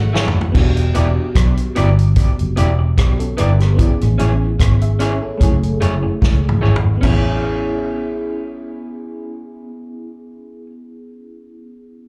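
Lovers rock reggae in A major at 74 BPM, sweet and tender, heard as a live club performance through the venue's PA with a gentle reverb, cut from a longer piece. A round, foam-muted electric bass and an acoustic drum kit with a tight kick and a dulled top sit up front, the drums carrying tape echo and playing fills at the opening and from 6.2 to 7.0 seconds, while a slightly broken-up, lo-fi guitar adds picked stabs through tape and slapback echo. A tremolo FM electric piano with phaser and slapback echo supplies chords such as F#m9, Em7 and Amaj7 until 12.1 seconds, and a dark, lush bowed string section is barely heard in the first half second.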